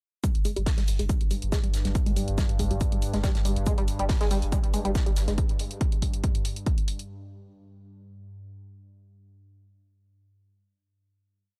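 Relentless and intense, this short piece of driving peak-time techno runs at 140 BPM in a straight 4/4, built on a heavy, tape-warm four-on-the-floor kick up front, layered electronic hats, and a round sine sub bass rumbling between the kicks with overdrive, pumping and a low-pass filter. A tight, detuned sawtooth synth repeats a five-step filter-pluck sequence that drifts against the bar, thickened with chorus, overdrive and tape echo, while a looped acoustic breakbeat of airy hi-hat, shaker and medium-tuned snare adds polished texture. From 1.0 s a moody, slow-attack pad drones on G2 under chorus and reverb, and it lingers with the hats until 7.1 s in a dry, gritty small-room sound with a cassette-tape character.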